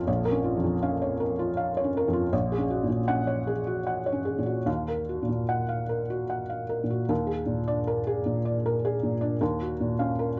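A felt-muted upright piano plays alone throughout this brief excerpt of reflective, intimate neoclassical minimalism, its thick-felted, mellow tone sitting up front with short sustain across a range from Bb1 to Gb5. The rubato waltz time drifts between 72 and 81 BPM while the harmony moves from Bbm through Gbadd9/Bb and Ebmadd9, turning at 7.1 seconds toward Bb7/Eb and settling on Gbmaj7/Eb at 9.4 seconds. A moderate studio ambience surrounds the playing, and the softened top end keeps the sound hushed and close.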